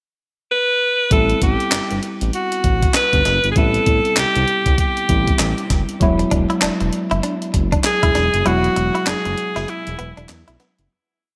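A bright, punchy alto saxophone opens this bouncy, confident new jack swing piece alone at 0.5 s, playing a pickup with a forceful, pop-style motif built from call phrases and sung with vibrato and a smooth top. At 1.1 s the band enters on an Am7 chord: a gritty, compressed, sampler-style breakbeat kit with a thumpy kick, a medium-tuned snare layered with handclaps, and hi-hat, hard-swung and up front with gated reverb. Beneath it, a mellow sawtooth and square-wave synth bass plays a swung synth-funk line with muted ghost notes, while a worn, slightly out-of-tune tine electric piano holds rootless chords through a combo amp with a subtle chorus. Just after the harmony moves to Eadd9 at 6.0 s, a direct-recorded clean electric guitar enters at 6.2 s with a picked, muted single-note riff and its own subtle chorus. The closing stretch drops into a break and fades out, all set in a moderate plate reverb with a bright 1980s-style digital sheen.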